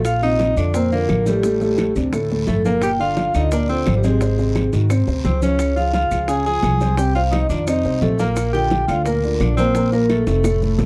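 This sunny, danceable stretch of Afro-Cuban jazz in Bb major opens at once on a close-miked, metallic vibraphone melody with its motor off, joined by a breathy tenor saxophone second line with light vibrato and a smooth top. Beneath them, a thumpy, dark pizzicato upright bass on gut strings sits up front, while round, low-tuned bongos and grainy maracas set the groove at a brisk 173 BPM in a straight 4/4. Within moments, bright, thin-skinned congas, woody claves and a raspy guiro join in the background, and a warm concert grand piano with a deep bass enters in accompaniment at 0.2 seconds. The harmony moves from Bbmaj9 through Gm7 and a colorful turn to Dbmaj7 before settling on Bbadd9. The dry, intimate 1970s-style studio sound has little reverb, and a drum fill at 10.3 seconds closes the passage, which is cut from a longer piece.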